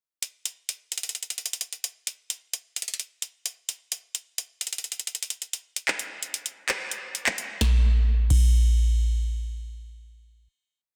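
A booming analog drum machine opens this brief, dark and brooding hip hop piece at 0.2 s, laying down a half-time trap beat at 130 BPM with a deep kick, crisp snare, handclaps, a crash cymbal and metallic hi-hats that break into fast rolls, the snare, clap and hats sitting in a short room. The beat stays up front through a breakdown before a final hit lands at 7.6 s, and the drums fall away at 8.4 s. A digital ambience surrounds the dense, heavily limited modern master.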